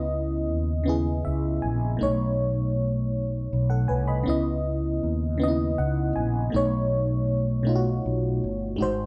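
A slow six-eight R&B groove with a late-night, yearning mood carries this short excerpt, where a glassy, bell-like FM electric piano with chorus lays down accompaniment on C#m9 and B9 chords and adds fills at 0.9 and 5.4 seconds, while a round, dark fretless electric bass sits up front with it in a moderately reverberant room.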